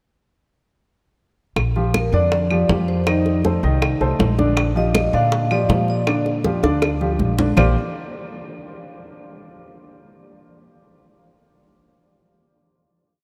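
A thumpy, woody upright bass plays a pizzicato tumbao that anticipates the chords, up front beside an intimate baby grand piano with audible action noise playing a montuno in octaves, while a mellow vibraphone with soft mallets and slow motor vibrato spins call phrases over bright, thin-skinned congas with slaps and open strokes, tight high-tuned bongos in steady eighths with hand bell, and vintage, band-limited claves keeping a two-bar time line in this short, danceable and sophisticated Afro-Cuban jazz piece, which closes with a drum fill from 6.6 seconds into a final chord ringing in a vast cathedral reverb.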